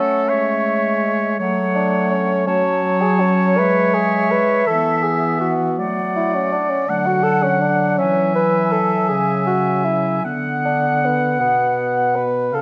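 A mellow bassoon sits up front carrying the bass line, with a smooth, lightly vibrato oboe close beside it on the second line, in this melancholic, elegiac excerpt from a slow romantic movement for wind quintet in F# minor, played with rubato at 54 BPM in 12/8. An airy, distant silver flute sings the melody high above with vibrato and tongued notes, while a soft-edged clarinet and a vibrato French horn, entering at 0.3 s, fill out the accompaniment. The harmony moves from F#m through E, D/F#, C#m/E and Bm/D, all held in the moderate glow of a recital hall.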